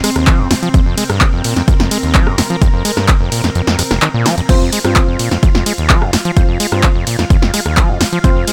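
A straight 4/4 pulse at 128 BPM drives this raw, driving acid house passage in F minor, cut from a longer piece. An overdriven electronic kick sits up front and punchy, dropping out briefly from 3.6 to 4.5 seconds, while a punchy analog drum machine, also overdriven, fills in crash and ride cymbals, handclaps, hi-hat, rim click and a punchy snare with a short room on the snare, clap and hats. The overdriven acid bass riff is squelchy, gritty and resonant, a saturated sawtooth with a filter sweep and fast, decaying notes, thrown into dub echo and pumping against the sidechain. Behind it, a lush vintage string machine holds sustained chords built on sawtooth tone with a sub octave, slow attack and ensemble chorus, breathing with sidechain pumping in the background. From 4.5 seconds a deep, mellow chord stab joins, soft and evolving with a filter sweep, chorus and dub echo, all in a dry sound with little reverb.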